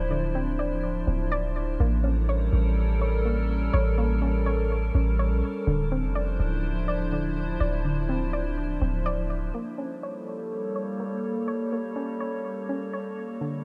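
A half-time 4/4 hip hop groove at 124 BPM drifts through ethereal, spacious air over a progression that moves between Dm9 and A7b9 in light reverb. A glassy FM pad holds sustained chords with ensemble chorus and its own reverb, a soft, round pluck traces arpeggios through chorus and digital delay, and a deep, boomy 808-style bass sits up front until it drops out at 9.5 s, leaving the pad and pluck to carry the closing stretch on A7b9.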